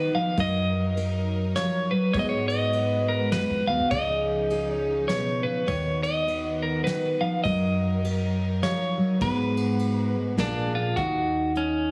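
A clean, up-front electric guitar carries the melody with tremolo over a fingerpicked steel-string acoustic guitar, audible finger squeak and all, while a bowed chamber string section holds soft, sul tasto chords in the background from the very start. At 0.4 seconds, a woody, thumpy pizzicato upright bass and a brushed drum kit with dark cymbals, a fat snare and a punchy kick join. This hopeful, nostalgic acoustic folk passage sways in a swung triple metre, moving from Gb6 through Abm7 and Bb7 to settle on Ebm at 11.0 seconds, all within a concert-hall reverb and a heavily compressed, radio-like sound.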